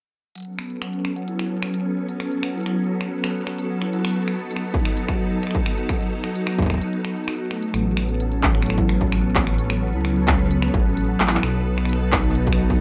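A metallic vibraphone opens this wistful, intricate IDM excerpt, its medium-mallet arpeggios ringing through a low-pass filter and tape echo with a fast motor vibrato, while crisp finger snaps, handclaps and hi-hat from a tape-warm industrial kit sit up front in a small room. A silky string machine soon fills in sustained chords, its vintage ensemble chorus giving the pads a soft, warbling glow. A distorted electronic kick joins at 4.7 seconds, and the vibraphone's filter is swept through both halves of the piece. After a brief break, a deep, rumbling detuned saw bass arrives at 7.7 seconds, dark and beating beneath the harmony, which moves between A69 and B7 chords. From 8.2 seconds a resonant, bubbling texture of random filter steps drifts in the background, bathed in chorus and its own reverb, all within a rough home-demo mix with light reverb.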